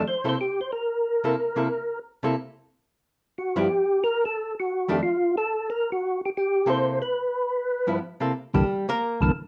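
Greasy and bluesy, this swinging jazz fragment at 181 BPM in C mixolydian puts a mellow, round tonewheel organ up front on the melody, its third-harmonic percussion clicking through a slow rotary speaker and chorus vibrato, while a dark, clean, picked hollow-body archtop guitar comps over chords moving from C6 through G6, F6 and G13 before stepping out for a brief solo at 8.3 seconds over C13, all set in a moderate studio reverb with a dusky, warm production.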